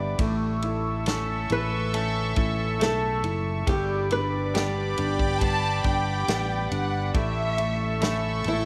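Light reverb and a small-room ambience frame this tender, hopeful pop ballad at 69 BPM in A mixolydian, drifting between A and G chords. A polished grand piano opens with a fill and sits in the background alongside clean, compressed electric guitar arpeggios, a bright sawtooth pad with a slow attack, filter swell and chorus, and a growly, up-front fretless bass with analog chorus, while a natural country kit with a punchy kick and medium-tuned snare enters at 0.2 seconds. A boxy fingerpicked flamenco guitar carries the melody from 1.5 seconds, complete with finger squeaks, and a lush, expressive violin section adds a bowed second line with vibrato from 5.0 to 8.2 seconds.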